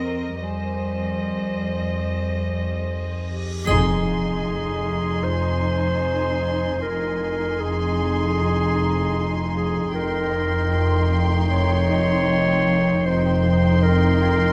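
Eerie and tense, this suspense film-score excerpt in F minor moves at 77 BPM, opening with veiled, con sordino violin sections carrying the melody and a second line over a muted double bass section, a distant cello section, a metallic inharmonic drone with chorus, and mellow vibraphone in the background. At 3.4 seconds a huge, dark reverse cymbal swells into an impact. By 3.7 seconds a clear, up-front clarinet has joined as a second line, along with close muted violas, a woody marimba riff and a brief, dry triangle, all sitting in a moderate scoring-stage reverb as the harmony shifts from Cm7/F to Fm7.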